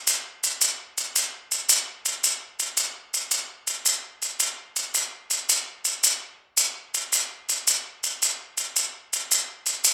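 Lone maracas open this short passage at 0.1 seconds and carry it through to 9.9 seconds, setting a warm, rippling mood rooted in southern African traditional music. The pulse moves at 110 beats per minute, counted in dotted quarters within a 12/8 metre, and the feel stays straight. The maracas have a grainy, mellow, acoustic tone, sitting up front in the mix yet carrying a distant quality, as if heard across a large room. A light reverb lends the recording a soft sense of space. At 2.2 seconds the opening material returns and continues to the end of this fragment, which is cut from a longer piece.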